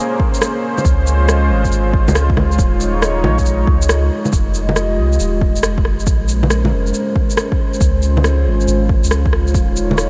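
A dark, detuned sawtooth pad sits up front in this nocturnal, melancholic future garage excerpt, its slow-attack chords thickened with chorus, a sub octave and vintage 12-bit sampler grit, and pumping against the sidechain. The track moves at 138 BPM in 4/4 with a 16th-note swing and stays in F minor, cycling through Bbm9, Dbmaj7 and Eb9sus4 before the second section opens on Fm9. A deep, overdriven electronic kick anchors the groove, while an overdriven layer of electronic shaker, rim click and bongos adds grainy detail. A round, soft dub sub bass built from triangle and square waves enters at 0.8 seconds and pumps with the sidechain beneath the pad. The kick briefly drops out just before the second section begins at 4.3 seconds, and light reverb gives the mix a subtle sense of space.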